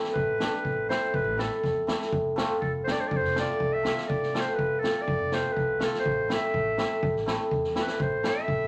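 In a straight 4/4 groove, a street-band drum kit sets a bittersweet, soulful klezmer scene with a boomy kick and a medium-tuned snare that sound snug and rolled-off in a small room, while a shimmering, ringing hammered dulcimer and a woody, thumpy pizzicato upright bass move from A minor to F and back at 6.0 seconds. Up front, a clear clarinet takes a classical-style solo throughout the short passage, which is cut from a longer piece. A wet studio reverb and a layer of vinyl crackle give the whole passage an aged, intimate character.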